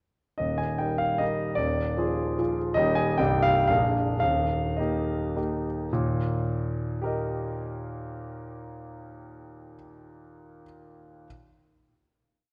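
Heard through a worn, warbling old cassette tape with drifting pitch and a wet scoring-stage reverb, this brief, rustic and proud romantic classical dance in 3/4 and Eb major features a solo concert grand piano up front, its intimate, polished tone carrying audible action noise as a single-line melody rides over deep octave bass and chords in dotted rhythms with rubato, moving between 98 and 160 BPM before slowing down from 2.2 seconds and arriving on a final chord held from 5.9 to 9.2 seconds.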